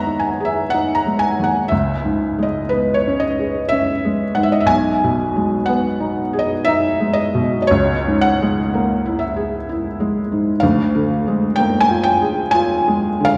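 Classical romantic nocturne for solo piano, yearning and melancholic, moving at about 61 BPM in 3/4 with uneven, rubato beats. A felt-muted upright piano plays alone throughout this 13.4-second cut from a longer piece, its soft, intimate tone carrying short sustain and audible action noise as the harmony drifts from G#m toward A#7/D. A wet concert-hall reverb with a 2.1-second decay places the listener further back in the room.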